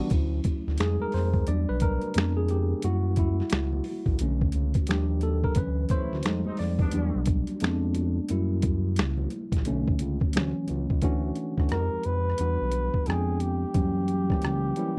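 A dry, close 1970s-style studio sound with lossy compression artefacts frames this relaxed, sensual neo-soul R&B groove at 88 BPM with a swung feel, where a worn, slightly out-of-tune, lightly overdriven tine electric piano takes a solo from 0.1 seconds over jazzy chords like Dmaj9 and F#7b9, backed by a smooth, dark sawtooth synth bass with vibrato, a gritty, pitched-down boom bap drum kit with thumpy kick, snare, rim clicks, hi-hat and finger snaps, very quiet ringing congas, a brief stab from a distant, mellow horn section at 5.9 seconds, and a breathy flugelhorn melody that enters at 11.7 seconds.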